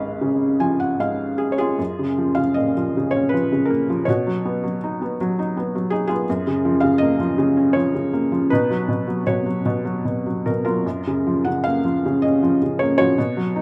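Flowing in a gently rubato three-beat metre, this excerpt from a longer classical piece for solo piano feels calm and peaceful. A felt-muted upright piano carries everything on its own, soft, mellow and intimate, with thin felt, short sustain and audible action noise that keep it natural and up front. It opens on a C#7 chord with a brief fill from 0.2 to 1.8 seconds, then settles into a lyrical passage that rocks between F#maj7 and Badd9 until it ends at 13.6 seconds. The playing ranges from G#1 to G#5, and the instrument is tuned slightly low, to A4 = 436 Hz. Close, detailed microphones capture the piano in a dry, nearly reverb-free space, making it feel as though the listener is sitting beside the keys.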